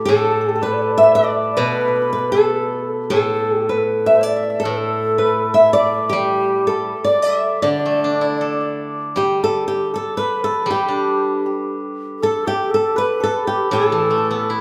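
Chinese traditional chamber music at 79 BPM in a straight 2/4, festive and pastoral, led by an up-front, fingerpicked flamenco guitar melody, with an airy, bright low xiao playing a tongued second line with vibrato alongside a shimmering, ringing hammered dulcimer, all over a silvery steel-string zither accompaniment picked with fingerpicks, in a moderate recital hall reverb, moving into a new section at 9.2 seconds.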